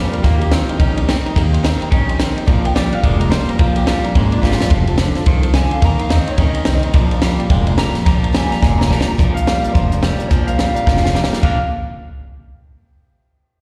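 A fast swung rockabilly shuffle at 215 BPM in 4/4 drives this rollicking, retro clip in Bb mixolydian, cut from a longer piece and captured live through a venue's PA with recital hall reverb. A compact cocktail drum kit sits up front with a punchy kick, high-tuned snare and dark cymbals, dropping fills at 4.4 seconds, around 9 seconds and again near the end, while a woody, thumpy upright bass on gut strings holds the low end. A clean, twangy electric guitar carries the riff with slapback echo, and a second electric guitar through a small old amp takes the melody with a bright, slightly broken-up tone soaked in plate reverb, slapback and tape echo. Behind them, a full-bodied jumbo acoustic guitar picks out accompaniment with audible finger squeak, and a jangly, metallic tack piano adds vintage sparkle high in its range. The chords move from Eb through Bb and F before returning to Eb and Bb.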